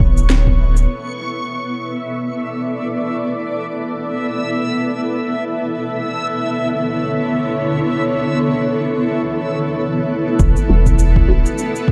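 A hazy, spacious ambient dub fragment opens on a cloudy, evolving granular pad up front, a reversed, dreamy swelling texture above it, a round sub bass note and a punchy kick in the background, with an overdriven electronic shaker and woody snare, run through dub echo, entering at 0.2 s. The pad's blurred, sustained chords carry on after the bass and kick drop out, and both return at 10.4 s as the harmony moves to Em9. A muted, chorused dub chord stab with echo appears at 10.7 s in the closing moments of this dark production.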